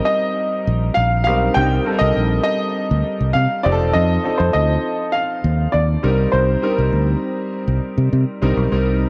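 A lush hall reverb and the soft grain of a home cassette recording frame this short excerpt of polished 1980s jazz-funk pop, cut from a longer piece. The mood is bittersweet and slick, moving in a straight four over Cm7, then F7 at 3.7 seconds, then back to Cm7. An intimate baby grand carries the melody between C5 and G5, its short sustain and audible action noise giving the line a close, natural feel, and it adds a cassette tape coloring. Beneath it, a clear concert grand plays the accompaniment with deep bass and long sustain, treated with analog chorus and the same tape character. A fingered electric bass enters at 0.7 seconds, direct and amped, sitting up front and slightly louder than the pianos.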